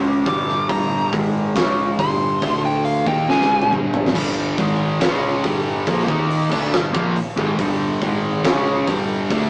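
A rough rehearsal-room recording with a small-speaker sound and moderate studio reverb carries this menacing, driving hard rock excerpt at 139 BPM in 4/4, where two overdriven semi-hollow guitars, one dark and phased and the other tucked in the background, drive a riff over a fingered electric bass set low in the mix, while a huge arena drum kit sits up front with a fat snare and punchy kick and plays a fill from 3.3 to 4.1 seconds, a nasal lead guitar with a parked wah, overdrive and analog delay sings a solo melody between 0.3 and 3.7 seconds, and a bright, double-tracked tight distorted guitar joins the riff at 4.1 seconds.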